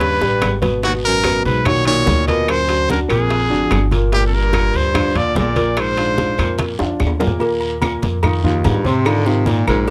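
A close, detailed recording with light reverb captures this sunny, danceable slice of Afro-Cuban jazz in Eb major, moving at 146 BPM in a straight 4/4 and cut from a longer piece. A bright, forceful trumpet carries the melody up front with punchy, scooped notes and light vibrato until 6.6 seconds, while a baritone saxophone with vibrato plays a second line beneath it and takes a solo from 7.4 seconds. A woody upright piano supplies natural-sounding accompaniment, and a dark, thumpy pizzicato upright bass with gut strings anchors the low end. The percussion sits in the background: low-tuned congas with a thick skin, tight high-tuned bongos and cowbell struck with hard hands, ringing metal-shell timbales and agogo bells, a raspy guiro, and compressed, saturated claves entering at 0.4 seconds. Drum fills open the passage and return just before the saxophone solo, as the harmony shifts from altered and extended chords such as Ebaug7 and D7alt toward the open Ebsus2 and Absus2 sounds of the closing section.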